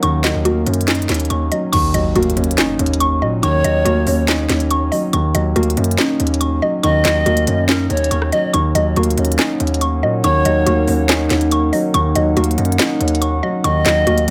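A dark, boxy concert grand piano and a woody, round mallet-like synth pluck playing arpeggios through chorus, phaser and delay open this brooding, melancholic half-time trap excerpt together. Beneath them sit a heavy, aggressive distorted 808-style bass up front and a crisp trap kit with sharp snare, handclaps, rim clicks, hi-hats and crash. A deep, detuned analog pad sits in the background, drops out at 1.7 seconds as a distant electronic impact arrives, and returns at 8.5 seconds; from 3.4 seconds an airy pan flute with vibrato, chiff and delay adds a second line over light digital ambience.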